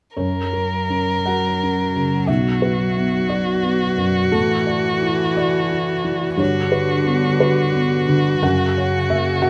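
Neoclassical piano and strings in a fragile, melancholic mood, moving in a slow, rubato 6/8 at 59 BPM through a chord sequence of F#, Bm, Dadd9/A, Gmaj7 and back to F#. A felt-muted upright piano, soft, dark and intimate with audible action noise, carries the accompaniment up front, while a single bowed violin sings the melody with expressive vibrato and portamento over a rich, even cello second line. Light reverb gives the close, natural sound a little air in this brief fragment cut from a longer piece.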